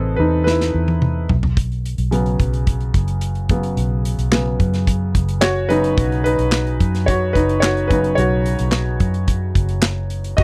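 Piano-driven pop at 109 BPM in a straight 4/4, this short, warm and anthemic clip is carried by a clear, up-front concert grand with deep lows and short sustain, soloing over chords that move from Amadd9 to Bsus2 at 1.3 seconds. A dark, round, foam-muted fingered electric bass plays underneath, and at 0.5 seconds an acoustic country drum kit enters with a fill that runs until about 1.6 seconds. The kit brings toms, snare, kick, hi-hat, crash cymbal and handclaps, its medium-tuned snare and punchy kick sounding up front in a small room. The sound is dry and intimate, like a 1970s-style studio recording.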